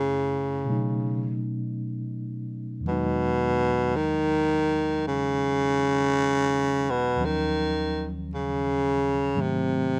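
A growling baritone saxophone carries the melody up front, its raspy, gritty subtone tone set low and close in this intimate, melancholic jazz ballad. The tempo is a slow 55 BPM in 4/4, with a gentle swing on the eighth notes and tuning pitched at A4 = 438 Hz. A tine electric piano plays accompaniment throughout, sounding warm and clean through its built-in speakers and sitting beneath the saxophone in the mix. The harmony moves from F#m7 and B9 into a long Emaj9, then through D#m7 to a tense G#7b9 at 9.4 seconds. Close, detailed miking and light reverb give this short extract, cut from a longer piece, an intimate, melancholic feel.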